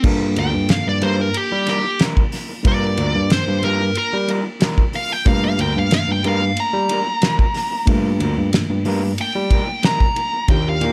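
Brooding and soulful, this straight-eighth soul blues in G minor at 92 BPM rests on a single Gm7 chord while a smooth, overdriven lead guitar solos up front through the whole 10.9-second fragment, over a barky tine electric piano carrying the bass, a soul drum kit with dark cymbals, a fat snare and a tight kick, dark, slightly broken-up guitar stabs through analog delay, and a reedy, worn, slightly out-of-tune electric piano with fast tremolo sitting in the background, all in a dry, close sound.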